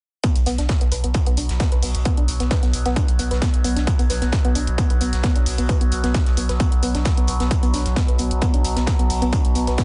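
Set in a small, dull-topped room, this dark, industrial peak-time techno cut from a longer piece drives at 132 BPM in a straight 4/4 on a B5 chord from 0.2 seconds: an up-front, distorted and overdriven electronic kick leads, a thick, saturated sub bass with low-pass filtering and sidechain pumping joins at 0.4 seconds, a woody, warbling wave-folded pluck riff with chorus, dub echo and pumping plays over them, and from 0.9 seconds a resonant, ring-modulated drone with sweeping overtones, chorus and built-in reverb swells in slowly, while an overdriven, pumping electronic hi-hat runs throughout and a smooth, fat-snared big rock kit with high-passed hats, snare and room sits in the background.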